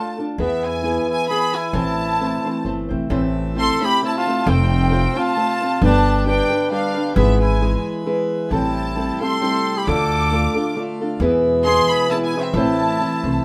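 A moderate studio reverb frames this passionate, dramatic mariachi excerpt in A minor at 133 BPM in a lightly swung 3/4, where a rich, biting violin section with vibrato carries the melody up front over a warm, classical-style solo trumpet second line, dark fingerpicked nylon-string guitar and a woody, thumpy pizzicato upright bass entering at 0.4 s, while a brilliant plenum pipe organ with chiff adds sustained chords in the background from 3.1 s.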